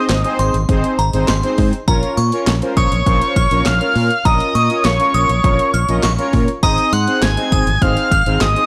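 This short, gritty hardware recording sits in a dry digital ambience, setting a nocturnal, driving synth-pop groove in Bb minor at 101 BPM in straight 4/4. A fat, detuned analog lead carries the melody high up front, its sawtooth and square-wave tone thickened by a sub octave, shaped by a filter sweep and vibrato, and trailed by analog delay. Beneath it, brassy synth brass holds sustained, dark chords with chorus, moving from Ab to Bb minor at 1.9 seconds and back to Ab at 6.6 seconds. A fretless electric bass sits up front with a warm, amped tone. A house drum kit drives the pulse with a punchy kick, cracking snare, hi-hat and handclaps, layered and tape-warm with the air of a large room. Quieter, a crystalline FM bell line enters at 0.4 seconds, its bright, decaying notes colored by chorus, phaser and delay.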